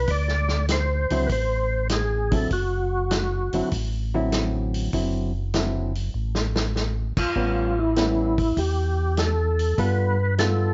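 Lightly reverberant and muted in the highs, this bluesy, soulful soul jazz organ trio swings at 99 BPM in D mixolydian, with an overdriven, gritty tonewheel organ carrying the melody through a slow rotary speaker and chorus vibrato, a mellow, round tonewheel organ with key click playing the bass from the start, a clean hollow-body jazz guitar accompanying from 1.1 s, and a saturated vintage drum kit with dark cymbals and a tight kick adding a fill at 6.1 s over chords moving from D9 to A9 and G9.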